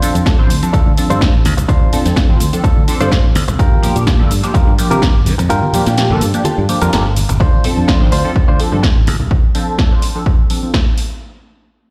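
A slightly swung groove drives this nostalgic, funky filtered disco house cut, with a punchy, tape-warm electronic kick up front, a house kit of snare, warm hats and shaker, and very quiet, soft-handed tambourine and congas. A growly, bright fingered bass and a detuned sawtooth polysynth comp with chorus, phaser and a moving notch pump under sidechain and low-pass filter sweeps, while a twangy, clean direct guitar riff carries sampler grit over a Dm7 to Gm7 movement. The kick drops out from 5.5 to 7.4 seconds before the groove returns to Dm7, and the whole mix rings through a big sound system in a bare stone room.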